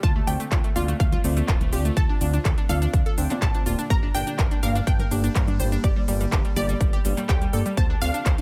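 A lush, digitally ambient mix opens this emotional, bittersweet progressive house excerpt at 124 BPM in G minor, where a punchy, overdriven electronic kick sits up front and a fat, detuned analog bass pumps beneath a Dm7 to Gm progression. A wave-folded unison pluck carries the melody with delay, while a round analog pluck spins chorused, tape-tinged arpeggios, a dark, phased chord stab enters at 0.3 seconds, and a morphing wavetable pad hovers very quietly underneath. An overdriven big-room kit adds crisp hi-hat, handclaps and cabasa in a small room, and soft, close congas murmur until 7.9 seconds.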